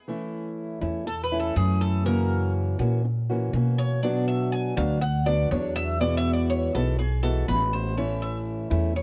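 A dark, boxy parlour steel-string acoustic guitar opens this excerpt from a longer Cuban son and guajira piece. It is fingerpicked on old strings and sits up front. An upright bass joins at 0.8 seconds, its pizzicato gut strings thumpy and woody, also placed up front. At 1.1 seconds the Cuban tres enters with picked arpeggios on its double strings, some of them octave-doubled, adding a metallic ring as it carries the solo to the end. The chords move from A through F#7, Bm and Eadd9 before returning to A, giving the straight 4/4 groove a warm, danceable mood, while the dry sound has the worn, warbling pitch drift of old cassette tape.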